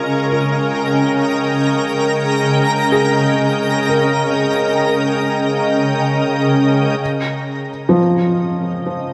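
Ambient music in free time, this luminous, peaceful excerpt rests in Db lydian and is cut from a longer piece. A shimmering, ethereal pad sits up front with sustained chords, its detuned unison voices, octave-up shimmer and slow attack dressed in chorus and built-in reverb for a bright glow. A felt-muted upright piano plays soft arpeggios through delay, its mellow, boxy tone carrying audible action noise that makes it feel intimate. Deep in the background, an evolving analog drone built from sawtooth and pulse waves with pulse-width modulation and wave-folding holds low under chorus. A twinkling granular texture adds sparkling FM shimmer high above until it stops at 7.0 seconds, where the music moves into its second section, and a lush hall reverb with a 2.8-second decay bathes the whole piece.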